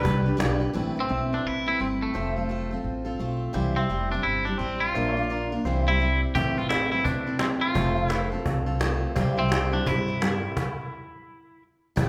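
A bright, twangy electric guitar carries the melody up front in this sunny, down-home honky-tonk and classic country excerpt, swinging in 4/4 at 171 BPM in C major. Beneath it, a full-bodied steel-string acoustic guitar picks the accompaniment, a thumpy gut-string upright bass holds the low end, and a pedal steel guitar adds warm, sustained chords with volume swells in the background. A woody cajon with faint snares taps briefly at the start and returns at 6.4 seconds, and the band hits a stop at 10.6 seconds, all set in the lingering reverb of a recital hall.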